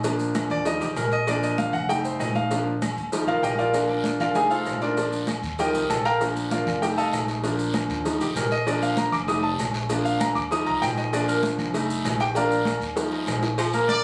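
A straight 4/4 salsa groove drives along at 195 BPM in Bb major, joyful and built for dancing. Congas with a thin-skinned, soft-handed tone sit in the background alongside very quiet, tight high bongos with cowbell, ringing metal-shell timbales with agogo bells, and grainy, distant maracas, while a raspy guiro joins at 3.7 seconds. A bright, polished grand piano takes the spotlight up front with a solo that runs nearly the whole passage, its action noise audible, cycling through Bb, Ebadd9 and F7 over a dark, woody, thumpy pizzicato upright bass. A drum fill at 13.0 seconds sets up the arrival of a warm, roomy baritone saxophone at 13.6 seconds, followed by a brilliant trumpet section with light vibrato just as this cut-off passage ends. The sound carries a club-like reverb and compression, with the character of a phone recording captured in the room.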